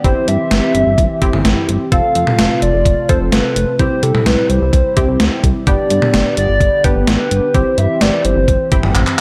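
An upbeat yet wistful synth-pop passage opens with every part at once: an up-front, overdriven, gated 80s digital drum machine with a thumpy kick, gated-reverb snare, handclaps, hi-hat and toms, under a hollow, woody clarinet-like synth lead singing the melody. The tempo is 128 BPM in a straight 4/4 in C major, tuned to A4 = 438 Hz. The harmony moves through C/G, F, C, G and back to C/G. A glossy, dark chorused synth bass with a pulse-width, filter-plucked tone anchors the low end, while a punchy, funky polysynth comp in sawtooth and square waves fills the middle. Behind them, a shimmering, slow-attack pulse-width pad with a sub octave and ring modulation sits in the background, and the lead carries chorus, phaser, slapback echo and vibrato before it stops at 8.7 seconds. A drum fill at 9.0 seconds closes this section, cut from a longer piece, all set in a light reverb.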